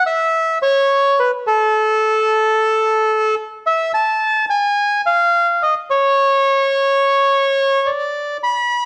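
A lone bandoneon carries this brief tango fragment, its reedy, dark voice sitting up front and playing alone for the full 8.9 seconds. The mood is dramatic and melancholic, with the line moving in a free, rubato feel over a 4/4 metre and staying in a middle-to-high register from A4 to B5. The instrument is tuned a little below modern concert pitch, with A4 at 436 Hz. A wet, large studio reverb with a 1.4-second tail surrounds the bandoneon and gives it a spacious setting. The sound has passed through worn, old cassette tape, which adds a warbling pitch drift to the recording. The clip is cut from a longer piece.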